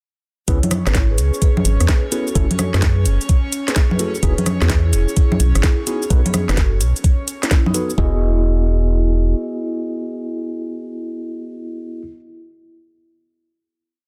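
UK garage in a bouncy, sunny two-step style, swung on the sixteenths, with a four-on-the-floor knocking kick up front beside a tape-warm garage kit of cracking snare, metallic skipping hats, rim clicks, cabasa and congas, all over a hollow, organ-like FM bass carrying a dark, skipping syncopated line. Soft-mallet vibraphone rings out a repeating riff in thirds and sixths with a gentle delay, while a mellow tine electric piano drops syncopated close-voiced chord stabs and a breathy, detuned pad holds chorused chords that pump against the kick until 8.0 s. The drums stop at about 8 s, and the bass lingers until about 9.3 s as the vibraphone and electric piano sustain a final Emaj9 chord through 12.0 s in a dry, dense, heavily limited mix.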